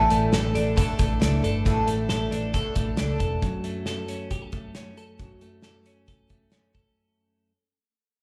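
A bright, twangy twelve-string electric guitar sits up front, its clean, compressed arpeggios ringing with slapback echo through this breezy, youthful slice of jangly indie pop at 136 BPM in a straight 4/4. Beneath it, a boxy, shimmering twelve-string acoustic archtop adds octave-doubled picked accompaniment with a touch of finger squeak and its own slapback echo, while a vintage muted electric bass gives a dark, round, foam-muted pulse. Both of those parts drop away at 3.4 seconds, just as the harmony shifts from Asus4 to F#m, leaving the electric twelve-string and the drums to carry on. The loose indie kit sits up front with a punchy kick, a medium-tuned snare and hi-hat, its rolled-off top and pumping room keeping it warm until it stops at 6.8 seconds. Cut from a longer piece and fading out over its 7 seconds, the clip has the feel of a live gig heard through the venue's PA, with club reverb and a light studio sheen around the band.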